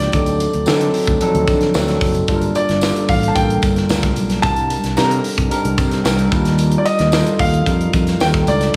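A chorus-lush tine electric piano sits up front with slapback echo beneath a clear, short-sustained baby grand melody carrying slapback and tape echo, while a tube-saturated fretless bass, a crisp fusion kit with high-tuned snare, tight kick and hi-hat, and a jingly tambourine in the background fill out this slick, urban 1980s jazz-funk pop passage, cut from a longer piece, as it moves through D7b9, Gm7, Cm9 and Ebmaj9 in concert hall reverb with a big arena sound.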